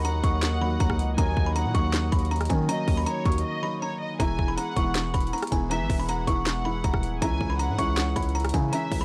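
Hip hop trap in a brooding, eerie half-time groove, where a buzzing, woody kalimba carries the melody over a floating sul tasto violin section with analog delay, a dark, mellow grand piano accompaniment, a very quiet detuned analog pad and a heavy, distorted 808 bass, while an up-front trap kit of hard-clipped kick, sharp snare, metallic hats, handclaps and rim clicks drives the groove, with a brief break from 3.4 to 4.2 seconds and a dry, gritty cassette-tape sound across this short cut from a longer piece.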